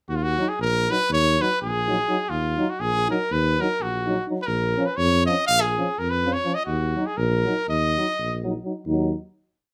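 Driving along in a straight 9/8, this short, fiery Balkan brass band piece sets a close-miked, dark tuba up front playing root-and-fifth bass on the main beats. The mellow French horn, distant and roomy in the background, and the smooth-topped euphonium each carry one line of the offbeat chords from 0.4 s. A bright trumpet with light vibrato leads up front with a virtuosic, motif-based melody in sentence phrases, all in a classical style, before the band settles on a final chord at 8.9 s in a moderate studio reverb.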